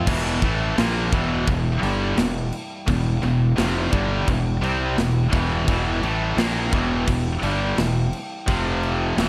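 A dark analog pad with a subtle chorus hums in the background from the start as two bright, distorted high-gain guitars, one scooped and up front, drive a heavy, dark metal riff over a growly fuzz-overdriven fingered bass and a tight, polished drum kit of crash, snare and kick, the Em harmony shifting to F5 at 8.5 seconds in this short, dry cut from a longer piece.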